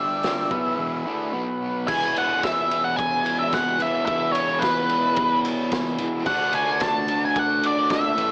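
Rowdy and swaggering, this garage rock excerpt struts at 110 BPM in E mixolydian, with a dark, picked octave-fuzz lead guitar carrying the melody up front over a bright, double-tracked fuzz guitar riff and a buzzy, overdriven combo organ holding sustained chords with light vibrato in the background. A raw acoustic drum kit enters at 0.2 seconds with a boomy kick, medium-tuned snare and dark cymbals in a small, pumping room, saturated and gritty with a rolled-off top, before a break at 0.8 seconds gives way to the main section from 1.9 seconds. Moderate spring reverb and a home cassette recording give the whole piece a small-speaker sound.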